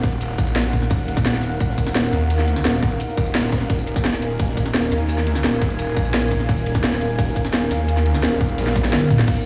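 A driving 172 BPM drum and bass groove in 4/4 opens this dark, aggressive technical cut in Eb minor, built on a tight, overdriven electronic kick and an up-front drum kit with a cracking snare, bright hats, crash, tambourine and toms, under a very quiet, gritty breakbeat layer of dark ride and high-tuned snare, with a drum fill from 8.6 to 9.3 seconds. A snarling, growling distorted saw bass with detuned unison voices, tube saturation and a moving notch pumps with sidechain compression, while a deep, moody analog pad holds sustained Ebm chords with slow attack, chorus and its own sidechain pumping. The mix sounds as if played on a big sound system in a bare stone room, with light reverb and small-room ambience around a short fragment of a longer piece.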